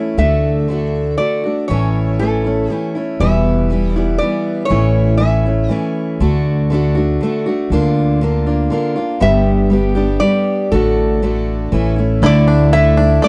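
A nasal, metallic resonator slide guitar, played with fingerpicks, carries the melody in this gentle, nostalgic acoustic folk piece in D major, set in 3/4 at 120 BPM. It drops out at 5.9 seconds and returns at 9.2, while a bright picked steel-string acoustic guitar with fresh strings and audible finger squeak supplies accompaniment up front, alongside a woody pizzicato upright bass also placed up front. A twangy, percussive bluegrass banjo adds arpeggios from 12.2 seconds, all within a dry, close 1970s-style studio sound with light reverb, in an excerpt that closes on a Dsus2 chord.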